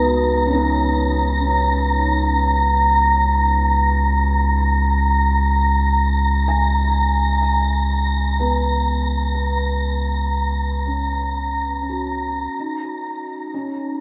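Ambient music in free time, melancholic and serene, cut from a longer piece and tuned slightly low at A4 = 437 Hz. A felt-muted upright piano plays arpeggios from B3 to D#6, its thick felt giving a dark, intimate tone with audible action noise, coloured by subtle chorus and analog delay, and it fades out over the first 12.5 seconds. Beneath it, a round sine sub bass holds a deep, sustained C#2 up front, while a breathy, wind-like tuned noise texture on A#5 hovers with a slow attack, long release and its own built-in reverb. The harmony rests on Bmaj7/C# until 12.5 seconds, when the bass and texture stop and the piano carries on alone over a rootless B chord to the close at 14.0 seconds. The whole mix is dreamy and soaked in a huge reverb with an 8.0-second tail.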